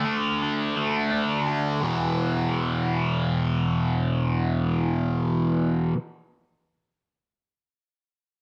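Trippy and kaleidoscopic, this rock excerpt moves at a straight 86 BPM in 4/4, tuned slightly low to A4 = 438 Hz. A single picked electric fuzz guitar, double-tracked and up front, plays a distorted, phaser-swirled riff spanning E2 to D4 from 0.0 to 6.0 seconds. It shifts from a D5 to an E5 chord at 1.8 seconds, all bathed in a moderate spring reverb.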